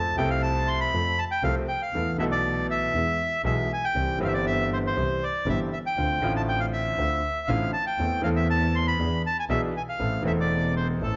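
Tense and passionate, this short tango passage, cut from a longer piece, unfolds with a rubato feel in 4/4 over roughly 11.2 seconds. The reedy, bright bandoneon carries the melody up front and mid-forward in its upper register. Beneath it, a concert grand piano with a clear tone, deep bass and a vintage character plays the accompaniment, sitting just as close. A single bowed double bass with a rich tone supplies the low line, its soft attacks, vibrato and portamento giving it an expressive quality. The harmony moves from F through Esus4 and E to C and Dm7, then passes through Am/E and E7 before settling on Am. All three play throughout in a moderate large-studio reverb, and the sound has a rolled-off top end.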